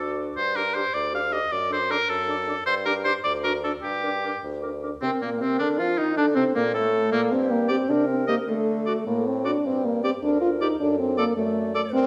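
A smooth-topped French horn with vibrato and a clear, present oboe sit up front in this restless, stormy classical-period movement for wind quintet in 6/8, while a distant, hollow flute carries the melody in the background over a roomy, mellow clarinet accompaniment and a soft-attacked bassoon bass, the ensemble heard in a wet recital hall.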